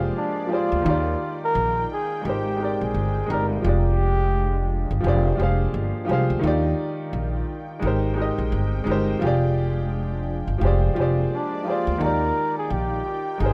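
A woody upright piano, a plucked, growly upright bass and a lush, detuned sawtooth pad drifting in the background open this hazy, nostalgic, swung lo-fi hip hop snippet of cycling jazz chords like Ebmaj9 and Abmaj9, as a breathy flugelhorn with light vibrato carries a mellow solo melody from 0.2 to 5.0 seconds and returns at 11.3 seconds through an analog delay, all in a rough home-demo mix with light reverb.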